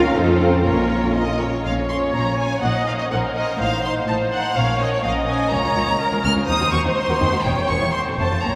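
A bowed violin section carries the melody up front with a soft attack and expressive vibrato, its rich tone climbing from C5 to F6 in this short cut from a longer classical-period movement for string orchestra. Set in Bb minor at a quick 124 BPM in a straight 2/4, the music feels urgent and dramatic, with harmony moving from an opening F7 into Bb minor and passing through diminished chords before settling on F at 7.9 seconds. Behind the lead, a second violin section sounds smooth and even from a distance, while the violas fill in the accompaniment with vibrato and sliding portamento. The cellos enter at 0.2 seconds with a focused, lush sound and a smooth top, joining the distant, lightly vibrato double basses on the bass line. A cathedral reverb with a long 6.5-second tail wraps the ensemble in a wet, spacious ambience.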